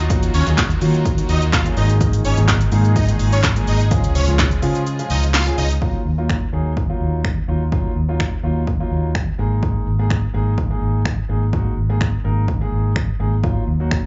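Heard as a live gig through the venue's PA, with club reverb and a dull, capped top end, this energetic, bittersweet dance-pop passage moves at 126 BPM in Eb minor. Up front, a punchy, tape-warm analog drum machine of kick, snare, handclaps, finger snaps, hi-hat and shaker drives a dark, round, foam-muted fingered bass and a deep-bodied grand piano with slapback echo. The opening drop layers a huge, lush supersaw melody through phaser and delay over an airy, detuned pad in the background, with pumping on bass, piano and pad, and the kick is muted from 4.9 s until the pad stops at 5.8 s, just after the supersaw ends.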